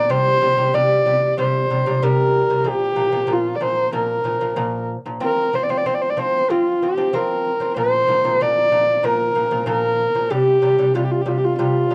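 A straight 4/4 pulse at 94 BPM carries this proud, vast piece of traditional Mongolian folk music in a Bb gong mode, cut from a longer performance. A single horsehead fiddle, husky and woody on bowed horsehair strings, sings the melody up front with light vibrato and sliding portamento. A mellow acoustic lute fingerpicks delicate arpeggios on doubled gut strings beneath it, both parts playing throughout the 11.9 seconds in a dry, close 1970s-style studio sound with light reverb.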